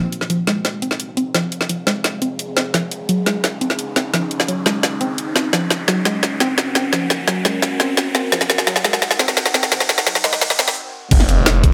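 A deep, moody ambient pad with chorus and sidechain pumping opens this dark, futuristic technical drum and bass build-up, joined by soft, round, wave-folded pluck arpeggios with delay under a filter sweep, a drum fill on an overdriven kit with a woody snare and bright hats, and a background riser that builds until a brief stop at 10.8 seconds, before an impact at 11.1 seconds brings in a knocking, overdriven electronic kick and a thick, swirling, phased detuned saw bass with tube saturation over the returning Fm chord.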